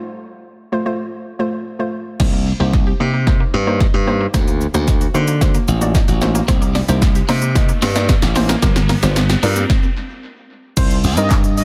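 A hollow, bouncy square-wave pluck with chorus and sidechain pumping opens this driving, confident dance-pop excerpt at 112 BPM, moving from F to Cm7. At 2.2 seconds a punchy, tape-warm deep house kit with handclaps, shaker, crash and tape echo arrives with a glassy, up-front slap bass and a very quiet, woody mallet-like FM pluck playing arpeggios, launching a build-up and a drum fill over Cm7, D7b9b13 and Gm7. A faint riser and a bright, clean twelve-string electric guitar riff in the background follow, until a stop at 9.7 seconds gives way at 10.8 seconds to a bold, retro octave-doubled sawtooth lead with vibrato, all within an echo-heavy digital ambience.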